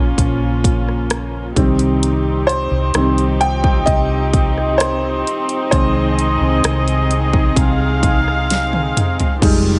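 A worn, woody upright piano with a slightly detuned, boxy tone and long sustain carries the solo from 0.0 to 9.4 seconds in this longing, emotional pop ballad at 65 BPM in straight 4/4, tuned to A4 = 444 Hz, moving through Bbm, Cm and Ab/C over intimate, close sul tasto chamber strings holding sustained chords with light vibrato, a dark, round, foam-muted electric bass, and a punchy, layered electronic pop kit with a fat snare sitting up front that plays a fill at 8.5 seconds, the whole passage set in light reverb and digital ambience and cut from a longer piece.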